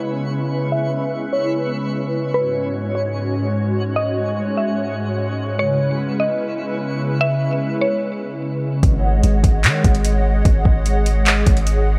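Hazy digital ambience and light reverb wrap this ethereal cloud-rap hip hop excerpt at 148 BPM in a half-time feel, opening with a hollow, flute-like pad warbling through C#m7 and G#7sus4 chords, a woody, round FM pluck carrying the mallet-like melody, and a faint, sparkling granular texture with an octave-up shimmer. A filter sweep runs through the first 8.8 seconds. The pluck drops out at 8.4 seconds, and at 8.8 seconds a deep, sine-toned 808-style bass with long decays and a smooth electronic R&B kit of soft kick, metallic hi-hats and handclaps arrive up front, while the sidechain-pumped pad carries on.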